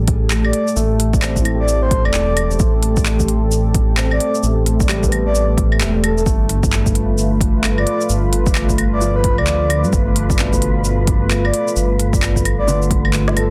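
Swung sixteenths at 131 BPM in 4/4 drive this nocturnal, rainy future garage excerpt, anchored by a punchy, layered electronic kick and an organic electronic kit of woody snare, crisp hi-hats, handclaps, claves and shaker, tape-toned and re-recorded in a large room, with a drum fill at 13.2 seconds. Underneath, a detuned sawtooth bass sits up front, deep and rumbling with a beating edge, while a moody analog pad holds full-bodied sustained chords with a sub octave, chorus and sidechain pumping. A mellow upright piano plays accompaniment in the background, roughened by vintage 12-bit sampler grit and tape echo and also treated with sidechain pumping. From 0.4 seconds a soft, breathy flute-like synth lead carries the melody with vibrato, chorus and tape echo. At 7.1 seconds an airy, wind-like tuned noise texture drifts in behind it, its own reverb adding a long, hazy tail. The harmony moves from Am7 to G9 at 6.3 seconds, all within a light reverb and a dense, heavily limited modern master.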